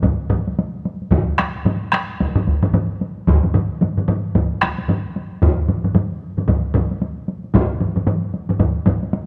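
Two solo taiko drums and two taiko ensembles strike together from the opening moment in this ceremonial, driving Japanese traditional passage, cut from a longer piece, set in 4/4 at 112 BPM with a swung sixteenth-note feel that keeps speeding up. One solo drum sits in the background and the other is struck with heavy sticks in a small room. The forward ensembles contrast a compressed, saturated heavy-stick sound with a hard-stick group heard as though from afar in a large room, all framed by close, detailed miking and a moderate concert hall reverb.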